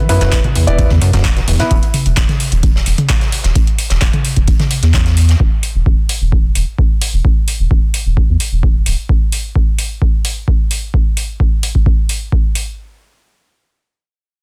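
A squelchy, resonant square-wave acid bass opens this hypnotic, raw acid house excerpt at 130 BPM in straight 4/4, its saturated riff sitting over an E5 chord and pumping against the kick before it drops out at 1.6 seconds. A clear, vintage grand piano fires short stabs with dub echo across the same opening moments, while a huge arena drum kit adds a fat, natural snare and filtered, pumping hi-hats in a big room until 5.4 seconds. Underneath, a round, nasal analog bass holds a dark, sustained low line with its own sidechain pumping, carrying on until 8.9 seconds. The deep, tape-warm electronic kick sits up front, joined by a booming analog drum machine whose handclaps, toms and metallic hats run nearly the full length. Studio ambience and a dense, heavily limited modern master keep the sound thick and forceful throughout.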